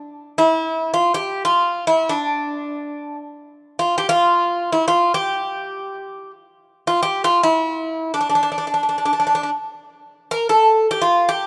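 Turkish makam ensemble music in free time, soulful and longing, where a Greek bouzouki plays alone from 0.4 seconds to the end at 11.5 seconds, its picked, metallic double strings, some doubled at the octave, sitting up front between D4 and Bb4 in a light reverb, in a short passage cut from a longer piece.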